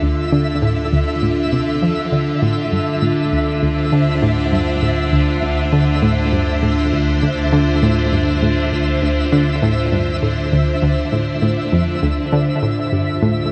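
Ambient and mysterious, this hypnotic excerpt rests on a single D minor chord: an up-front, morphing wavetable pad holds detuned, full-bodied chords with chorus, while a bright analog pluck with a sub octave and snappy filter repeats a low riff through chorus and delay. A deep, dark analog bass sustains a single note beneath, and a mellow granular texture adds twinkling, octave-up shimmer high above. A filter sweep runs across the synth arpeggio sound for the full 13.5 seconds, all within a huge ambient reverb with a long tail.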